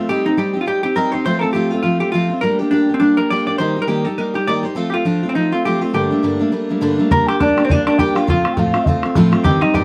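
Celtic folk reel in G minor at 205 BPM with a swung eighth-note feel, spirited and wild, cut from a longer piece. A picked steel-string acoustic guitar with finger squeak carries the accompaniment up front from the start, while a dark, clean hollow-body jazz guitar with plate reverb takes the melody over chords moving through Cm/G, F, Gm and Eb. At 7.1 seconds a pure, wooden baroque flute with vibrato and a crisp attack adds a second line, and a damped, tight, band-limited bodhran joins in, all in a close, detailed room with light reverb.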